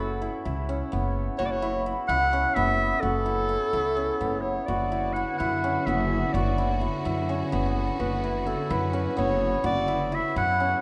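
A mellow, subtoned jazz-style clarinet with vibrato carries the solo melody up front in this hypnotic, urgent contemporary chamber piece in 7/8, over shimmering, ringing hammered dulcimer arpeggios and a woody, thumpy pizzicato upright bass, with a lush bowed string section adding sustained chords from 4.7 s, heard in a moderate recital hall reverb with a faint mains hum in this excerpt cut from a longer work.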